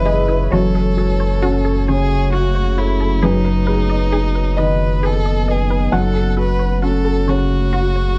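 A slow, rubato 6/8 sways at 44 dotted-quarter beats per minute in this reflective, longing neoclassical piece for piano and strings, cut from a longer work and set in F# dorian with tuning at A4 = 438 Hz. A felt-muted upright piano carries the accompaniment throughout, soft and intimate with audible action noise, while a single rich, bowed violin sings the melody with smooth vibrato, touched by slapback echo and plate reverb. Underneath, a saturated sub bass holds a thick, up-front F#1, and a deep, moody ambient pad sustains detuned sawtooth chords with a slow attack, chorus and its own reverb in the background. A juicy, squelchy blip pluck traces resonant arpeggios from 0.1 to 8.1 seconds, bright and chorused with a slapback echo, sitting in the background. The harmony rests on an F# pedal, moving from C#madd9/F# to F#m, then G#m/F# at 3.2 seconds before returning to F#m, all within a dark, warm production.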